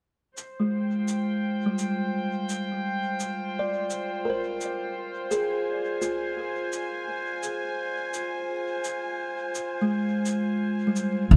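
A buzzing, hollow-boxed kalimba plays through this deep, meditative ambient dub excerpt at 85 BPM in F dorian, its thumb-plucked arpeggios ringing through a low-pass filter and tape echo over a sustained Fmadd9 chord. A rich chamber string section, bowed sul tasto with a soft attack, floats close and up front, while a pitched-down, overdriven shaker sits muffled underneath. Only at 11.3 s does a woody pizzicato upright bass arrive up front, dark with tube saturation, all set in a moderate spring reverb and warm production.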